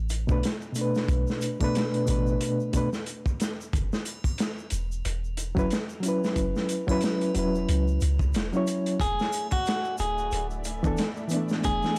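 A round, deep 808-style bass opens this smoky, dark trip hop excerpt in B dorian at 91 BPM, joined at once by a crunchy, saturated breakbeat kit with a tight kick, a background tube shaker and triangle, and a reedy electric piano with fast tremolo, sampler grit and tape echo over Bm7 and F#7sus4, before a clean, picked electric guitar melody with tape echo and sustained string-machine cellos with ensemble chorus enter at 9.0 s on E7sus4, all set in a dry, gritty recording with vinyl crackle.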